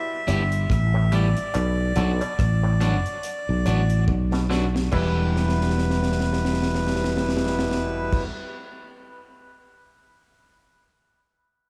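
Laid-back and meditative, this roots reggae excerpt moves at 71 BPM in E minor, with a reedy, breathy melodica carrying the melody over a clear trombone section on the second line, both soaked in dub echo alongside a picked electric guitar at the edge of break-up. A growly fretless bass sits up front with a deep, dry drum kit featuring a high-tuned snare and tight kick, its analog delay coloring drum fills from 4.1 to 4.9 seconds and again from 5.3 seconds, while a very quiet cowbell adds percussion. A muted, twangy clav plays auto-wah arpeggios in the background from 0.9 to 6.9 seconds as the chords move from Em to Bm and back to Em, and the drums play on until 9.8 seconds in an echo-heavy mix with light studio reverb.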